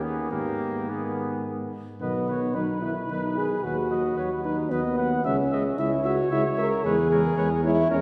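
Grave and solemn, this excerpt of a classical brass quintet unfolds in a rubato 3/4 at 112 BPM in B major: a smooth, vibrato-laden cornet carries the melody over a clear trumpet second line, a soft-attacked, close-miked French horn and a warm tuba bass sit up front, and a mellow, vintage-tinged trombone accompanies in the background, the ensemble heard from further back in a wet concert hall as the harmony moves from G#m to B at 2.0 seconds and on toward C#m.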